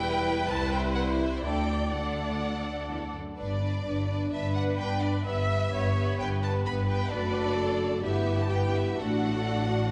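A quick, graceful classical-period orchestral movement at 127 BPM in 4/4, played with a lively yet flexible rubato feel in a passage cut from a longer piece. Violins carry the melody high in their range, lush and focused with vibrato, while a second violin line moves beneath them and the violas supply an expressive accompaniment marked by portamento. A mellow, tight French horn section holds sustained chords through the middle of the texture. The bass is shared by a clear, even cello section sitting in the background and a rich, bowed double bass section reaching down to low E. The harmony moves from C through D and G, then settles on Em/G, D/F# and D/A, all wrapped in the wet reverb of a scoring stage.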